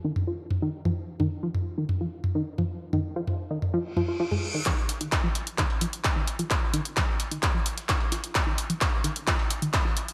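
Driving peak-time techno in a straight 4/4, this short cut from a longer piece feels intense and hypnotic under a bright 1980s-style digital sheen with light reverb. A tight sequenced synth riff runs up front throughout, its sawtooth and wave-folded tones given a filter pluck, with chorus, phaser, tube saturation, delay and sidechain pumping, while a filter sweep moves across the arpeggio. An overdriven techno drum kit of handclaps, hi-hat and toms sits up front with gated reverb. A reverse cymbal leads into the second half at 4.7 seconds, where a distorted, layered electronic kick drum arrives alongside a very quiet, gritty sampler-style kit of hi-hat and medium-tuned snare that sounds tape-warm and re-recorded in a large room. That closing stretch works as a build-up, with a drum fill carrying the groove to the end.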